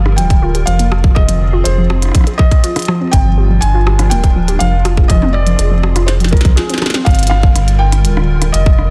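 A tight, up-front electronic kick drives this glitchy, cerebral IDM excerpt at 122 BPM in a straight 4/4, set in G phrygian and tuned to A4 = 444 Hz. Beneath it, a deep, round sine sub bass holds the low end prominently, while a glitchy kit of clicky hats, rim clicks, a tiny snare with soft clipping, and toms adds tape-tinged detail inside a studio reverb. A felt-muted upright piano carries the melody with an intimate, vintage tone and a dub echo. A warbling, detuned pluck spins dark, dusty arpeggios through chorus and delay. A hollow, flute-like pad sustains chords under ensemble chorus and 12-bit sampler grit as the harmony moves among Gm7, Fm7 and Fm. A drum fill arrives at 6.1 s, leading into a short break and a band accent before the section changes at 7.1 s, where the pluck drops out, all within a dense, heavily limited modern master.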